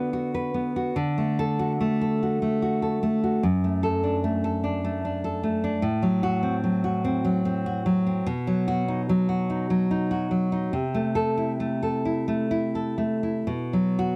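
Lightly reverberant and up front, this 14.2-second excerpt from a longer romantic piece for solo classical guitar features a full-bodied, fresh-stringed nylon-string guitar, fingerpicked with a deep classical tone in a passionate, wistful 3/4 rubato that drifts between 58 and 77 BPM, moving from Bm/D through D, D/F# and F#dim/A to B, then Am/C before settling on B5 at 13.5 seconds.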